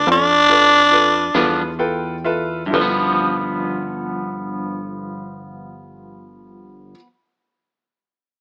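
A gritty, soulful slow blues excerpt in 12/8 at roughly 41-49 BPM in G mixolydian opens with a slowing tempo as a raspy, growling tenor saxophone takes a brief, up-front solo over G7 that ends at 1.8 s. A punchy, sawtooth-edged analog bass with a filter pluck and fast attack sits low beneath a woody upright piano, whose intimate fill with audible action noise runs from 1.3 to 2.7 s. A twangy electric guitar on the edge of break-up enters at 1.3 s with tremolo, while moderate spring reverb and a small-speaker character colour the sound as the harmony moves to G13.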